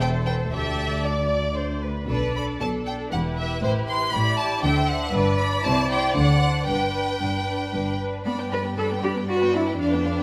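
In a straight triple metre, this quick, lively and cheerful classical-period movement for string orchestra is taken from a longer piece. A rich, up-front violin section carries the melody with focused vibrato, a more distant second violin section plays a supporting line, and a clear viola section fills in the accompaniment. Smooth, even cellos share the bass with a lush double bass section, all bowed throughout the 10.2 seconds in the wet reverb of a scoring stage, as the harmony moves through minor and seventh chords before settling on G at 6.7 seconds.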